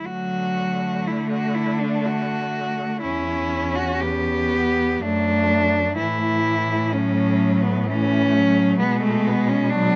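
A rich, smooth bowed cello carries the melody up front, singing between A3 and G4 with vibrato in this short passage cut from a longer classical piece for cello ensemble. Beneath it, a second cello sits in the background with an expressive counter-line, its soft attacks and portamento close to the ear, while a dark cello fills in the accompaniment with an even tone. A warm, distant cello supplies the bass from 0.1 seconds, its low notes also touched by portamento and vibrato. The mood is tender and serene, moving in a slow, rubato 3/4 at 62 BPM in D major, with the harmony passing from D through C#dim/E, D/F# and A to G#dim/B. The close, detailed recording has little reverb, so each bowed line sounds intimate and present.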